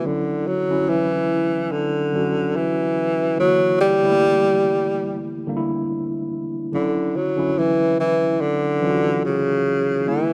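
A breathy tenor saxophone sings a clear, up-front jazz-style solo melody with vibrato and scooped notes over a worn, slightly out-of-tune tine electric piano. The piano is lightly overdriven, as if heard through built-in speakers, and accompanies through Dmaj9, Gm6 and back to Dmaj9 in this romantic soul fragment cut from a longer piece. A lush hall reverb gives the rough home-demo mix a warm glow.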